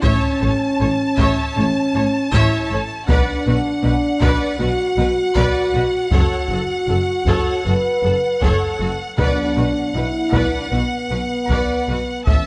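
A light reverb surrounds this dark, dramatic excerpt of epic orchestral film score in B minor at 78 BPM, where a focused, lush violin section carries the melody over a clear, distant second violin line, smooth viola accompaniment, mellow sustained French horn chords, a bowed cello and double bass bass, and close, heavy-stick taiko drums, with round, soft-mallet timpani sounding from 9.2 to 10.3 seconds and a huge, dark cymbal swell barely audible at the close.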